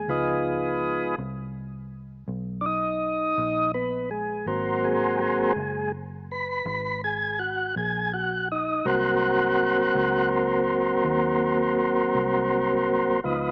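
Heard through a small speaker, this home cassette recording has a light digital ambience around it, and the organ itself carries its own cassette-tape color. It is a swaggering, laid-back slow blues in 12/8 at 55 BPM, counted in dotted quarters with a straight feel, set in Ab mixolydian and tuned slightly sharp to A4 = 443 Hz. The tonewheel organ sits up front, smooth and clean, holding sustained chords through a slow rotary speaker and taking the solo spotlight across the whole 13.5 seconds. Beneath it, a vintage muted fingered electric bass adds a dark, round, foam-muted low end, sitting well back in the mix. The harmony moves from Db9 at the start to Ab9 at 4.5 seconds in this brief section cut from a longer piece.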